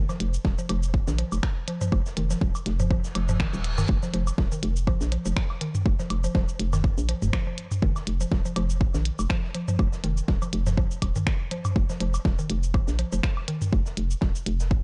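A punchy, tape-warm electronic kick sits up front in this hypnotic, clinical minimal techno fragment at 122 BPM in 4/4 with a light 16th-note swing, alongside a hollow, bouncy FM bass that pumps against it. A woody, round mallet-like synth pluck plays a riff through lush chorus and dub echo, while a minimal click kit of finger snaps, clicky hats and shaker, overdriven analog woodblock and toms, and a gritty, saturated snare and shaker in the background fill out the groove. A brief reverse cymbal sweeps in at 3.1 seconds, and the whole mix stays dark and dry with a rolled-off top.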